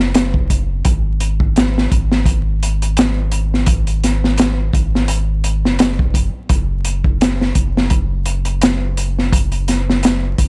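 A dry, gritty hardware recording with vinyl crackle frames this short, dark trip hop fragment, cut from a longer piece and set at 85 BPM in 4/4 with a light swing on the sixteenths. A crunchy breakbeat drum kit sits up front from 0.0 to 10.5 seconds, its hi-hat, punchy kick and high-tuned snare carrying an acoustic, small-room character that is saturated and smooth, with a rolled-off top. Beneath it, a soft dub sub bass plays throughout, hovering low between F#1 and G#1 with a deep, round tone drawn from triangle and square waves. Its notes have a fast attack and sustain, and tube saturation colours the bass while it stays close and present. The mood is melancholic and dark, with the drums slightly louder than the bass and the whole passage sitting in a single unchanging section.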